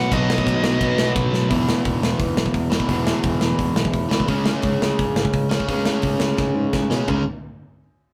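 Energetic and rebellious, this punk rock excerpt opens with a nasal lead guitar line through a parked wah that drops out by 1.1 seconds, while a thick, double-tracked fuzz guitar riff sits in the background only until 1.5 seconds. Two overdriven semi-hollow guitars carry the riff throughout, one bright and up front, the other dark and set back, over growly picked electric bass and a big, polished, airy acoustic rock kit with a punchy kick and medium-tuned snare. Drum fills land at 1.3 seconds and again near the end, all within a rough rehearsal-room sound with moderate reverb.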